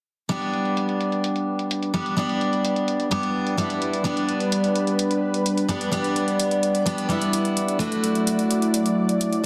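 The recording sits in a dense, heavily limited modern master, bathed in a moderate hall reverb with a digital ambience. This short cut from a longer festival progressive house track moves at 128 BPM in a straight 4/4 in G major, and the mood is uplifting and triumphant. A dark, full-bodied picked steel-string acoustic guitar sits up front as the accompaniment, with audible finger squeak and a tape echo trailing its notes. Behind it, a thick, warbling unison pad of detuned sawtooth voices holds sustained chords with a slow attack and long release, colored by chorus, while a filter sweep moves across it. Metallic, layered electronic hi-hats, re-recorded in a small room and softened by low-pass filtering, tick quietly underneath. All three parts enter together at 0.3 seconds, and the harmony rests on G before shifting to Dadd9 at 7.8 seconds.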